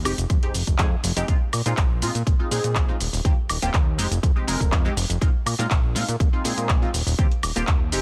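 A feel-good, sunny slice of filtered disco house, moving at 122 BPM in a straight 4/4 and cut from a longer piece. A fat analog bass sits up front from the start, its thick, detuned sawtooth tone saturated through tubes and wave-folded, with a filter sweep and sidechain pumping giving it motion. Above it, a funky polysynth comp in chorus and phaser plucks out punchy, detuned sawtooth chords with a moving notch, also pumping against the beat, cycling through Fm7, Bb7sus4 and Eb6 twice. A house drum kit enters at 0.1 seconds with handclaps, bright hats, shaker and woodblock, the hats and percussion pumping in a small room reverb. A punchy electronic kick arrives at 0.3 seconds and stays up front until 7.8 seconds. The sound is dry overall, with a dense, heavily limited modern master.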